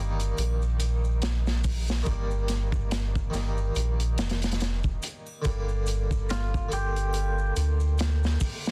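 Melancholic, brooding trip hop at 71 BPM with a swung 16th feel, this excerpt sets a dry, close-miked harpsichord, tinged with tremolo, 12-bit sampler grit, low-pass filtering and tape echo, over a round, deep analog bass and a crunchy, saturated breakbeat kit with a tight kick, while distant maracas, triangle and handclaps sit in the background, and a bright, twangy clean electric guitar enters briefly at 6.3 seconds through spring reverb after the harmony has moved from F13sus4 to Gm, all in a dense, heavily limited modern master.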